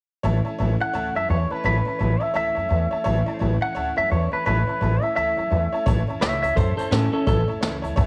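Upbeat and rowdy, this swung rockabilly fragment sets a twangy, compressed clean electric guitar melody with tape echo over a woody, thumpy pizzicato upright bass, a jangly detuned honky-tonk upright piano and a full-bodied picked steel-string acoustic guitar with audible finger squeak, while a distant, roomy brush drum kit with a tight kick joins at 5.9 s, all inside a small, lightly reverberant room.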